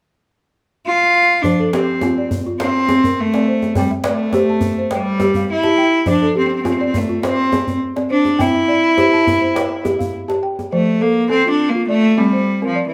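Joyful and flowing, this West African traditional excerpt at 103 BPM in 4/4 and F major opens with a rich, nasal, earthy bowed cello carrying the melody up front with light vibrato and slapback echo, joined at 1.4 seconds by a woody, round balafon played with soft rubber mallets in arpeggios and a deep djembe with metal rattles and slapback echo over an F and C progression, until the djembe stops at 10.7 seconds and the cello takes a solo, all in a light-reverb outdoor setting.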